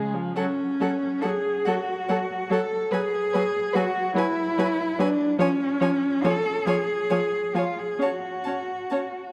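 A dark, warm production places this fragment of a slow romantic string quartet movement in a concert hall with a moderate reverb tail, giving it a melancholic, yearning character. The rich cello anchors the bass with a smooth, even tone and vibrato; it sits up front, though its sound has a distant quality, and it sustains until 9.3 s. The viola, also up front, carries the accompaniment with a soft attack, expressive vibrato and portamento, and a smooth top. One violin plays a warm second line with similar expressive vibrato and gliding portamento. From 0.4 s, the other violin carries the melody with a clear, focused tone and vibrato, sitting close yet in the background. The music moves in a compound metre with uneven beats and free rubato, and the harmony shifts beneath the melody.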